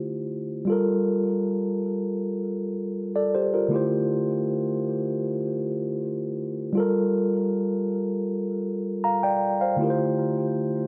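Longing and late-night in feel, this short R&B excerpt features a lone tine electric piano, mellow and clean, sitting up front with a touch of delay. It moves unhurriedly in a straight four between Gm9 and Dm11 chords across a range from D3 to Bb5. A moderate plate reverb with a 2.8-second tail gives the sound a soft glow around the instrument's direct, close presence.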